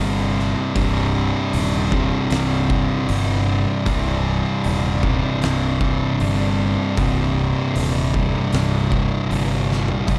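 A slow, straight 4/4 pulse at 77 BPM drives this brooding, hypnotic stoner and doom metal fragment, which opens on a C minor chord, with an oversized low-tuned drum kit entering at 0.4 seconds, its fat snare and punchy kick booming in a bright stone room, and a drum fill arriving at 9.7 seconds. Two thick, distorted fuzz guitars play the riff, one up front and the other further back, over a round, overdriven fingered electric bass. Behind them a breathy flute section holds sustained chords with vibrato, a soft attack and a slightly unsteady tone, all set in a dark, warm production.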